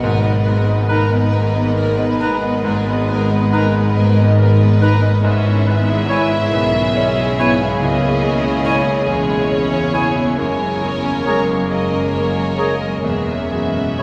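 Moving and tender, this cinematic excerpt unfolds in a rubato 6/8 at 46 BPM. A dark, woody violin section carries the melody over a second, smooth-topped violin line, while pure, floating violas, warm cellos and floating double basses play sul tasto alongside an intimate grand piano with audible action noise and deep bass. A French horn section holds background chords, and from 0.9 s a very quiet airy flute, mellow oboe and distant clarinet add second lines, all set in a long cathedral reverb as the harmony moves from G#madd9 through C#m and F#add9 to E6.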